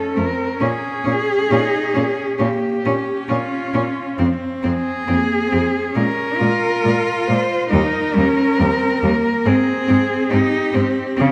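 Two bowed cellos open at 0.0 s: a rich-toned melody sung up front with vibrato, portamento and a soft attack, and beneath it a clear, focused second line. At 0.2 s two more cellos join, an inner accompaniment with a smooth top and a distant bass. Together they shape this yearning, elegiac classical fragment for cello ensemble at 68 BPM in 4/4, played with rubato, its harmony passing from F through Bbm and Fm toward Eb and Abmaj7. A wet scoring-stage reverb gives the ensemble a spacious, lingering halo.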